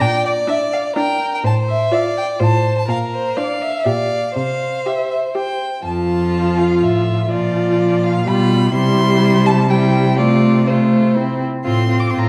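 A straight three-beat pulse drives this quick classical-period movement for string quartet, a dramatic, restless passage cut from a longer work. The first violin carries the melody high in its range, its bowed tone clear and focused with vibrato, set distant in the hall. The second violin plays a close second line beneath it. The viola joins at 0.5 s with close accompaniment, and the cello anchors the bass up front with a rich, intense sound whose top stays smooth. At 5.9 s the music moves into a new section, with harmony circling among familiar chords before returning home, all wrapped in a wet recital-hall reverb within a dark, warm production.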